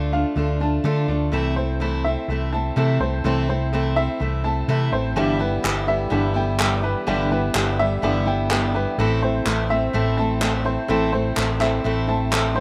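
A rough home-demo sound with small-room ambience frames this nostalgic, uplifting indie folk fragment at 126 BPM in a straight 4/4, cut from a longer piece. An up-front picked steel-string acoustic guitar with audible finger squeak, a round, punchy fingered electric bass and a clear, woody, slightly detuned upright piano playing short-sustained arpeggios through digital delay all run from the start. The arrangement builds at 5.2 seconds as a reedy, breathing pedal harmonium adds sustained chords in the background, followed at 5.6 seconds by crisp, distant group handclaps, over chords moving from Dm and Am/C to G6 and Am.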